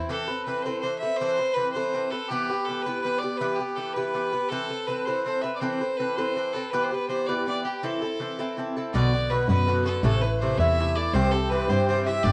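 A lively Celtic jig in a driving 6/8 at 109 beats per minute, this short cut from a longer piece sits in A dorian with a dark, lively mood. An up-front, picked Irish bouzouki sets the groove from the start, its doubled strings ringing with a metallic, acoustic edge. A single bowed fiddle carries the melody almost at once, nasal and earthy, sounding distant through a plate reverb even as it stays up front. At 8.9 seconds the tune moves into a new section and two parts arrive together: a reedy, close-miked accordion adds a dry, full second line in the background, while a bowed double bass plays the bass line with a focused, clear tone and vibrato. The harmony moves between A minor colours and E minor before turning toward B minor and C, all within a dark production and a moderate studio room.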